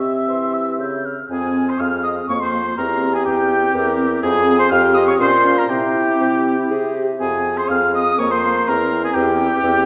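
A quick, straight 3/4 pulse at 123 BPM drives this dramatic, urgent classical-period movement for wind quintet in F minor, cut from a longer piece: a pure, crisp-attacked concert flute carries the melody up front over an oboe second line with light vibrato, while a smooth-topped French horn and soft-attacked clarinet accompany and a distant bassoon holds the bass, the four lower parts mellow in tone. The recording sits in a wet scoring-stage reverb heard from further back in the room as the harmony cycles through Fm, Bbm and C chords.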